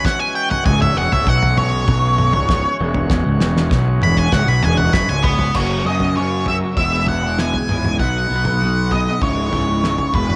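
Dark and trippy, this psychedelic rock fragment opens with a distorted octave-fuzz lead guitar soloing up front through tape echo, over reedy, bright tonewheel organ chords with subtle chorus and a cloth-damped, thuddy drum kit with a fat snare that plays a fill from 3.1 seconds; a slightly broken-up, flanged and double-tracked electric guitar riff and a punchy, overdriven fingered bass join within the first second, and the organ stops at 5.5 seconds as the harmony moves into a new section, set in light studio reverb.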